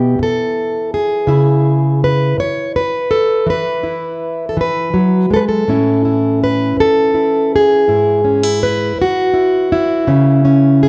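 The rhythm moves in an unhurried 6/8 with a straight, even feel, giving this short folk fragment a gentle pulse. A single fingerpicked, plugged-in steel-string acoustic guitar plays alone for the full 10.9 seconds, spanning from G#2 up to C#5. Its jumbo body sounds full and resonant, and fresh strings bring clarity to a tone that sits up front in the mix. The harmony passes from Em/B through C#m, E and A before settling on E/G#, lending the passage a hopeful, warm quality. A moderate recital-hall reverb surrounds the instrument, and the dark, warm production keeps the overall sound rounded and intimate.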